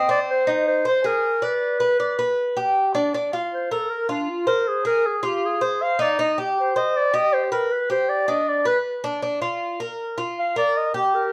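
A warm clarinet with a smooth top carries the melody in a classical style, up front and touched by slapback echo, taking a solo from 3.1 seconds to the close of this short cut from a longer latin piece at 158 BPM in a straight 4/4. Beneath it a Cuban tres plays picked arpeggios throughout, its metallic double strings, some doubled at the octave, sitting close and acoustic. The mood is sultry, set in a dark production with moderate studio reverb, as the chords move from Ab and G through Bb, Fm and Cm to land on Eb.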